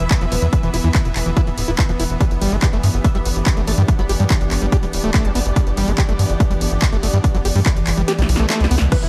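Psychedelic trance with an intense, hypnotic drive, cut from a longer piece, where a heavy, overdriven electronic kick and a tight, saturated sequencer bass sit up front beneath a squelchy, distorted acid bass riff with digital delay, a punchy techno kit with crash, handclaps, hi-hat and snare, an evolving, chorused wavetable pad pumping in the background, a rich bowed string section, and a very quiet resonant blip pluck from 3.0 to 5.4 seconds, until the kick drops out for a drum fill at 8.1 seconds, a faint swell and downlifter arrive at 8.3 seconds, and a huge, detuned supersaw melody with phaser bursts in at 8.9 seconds.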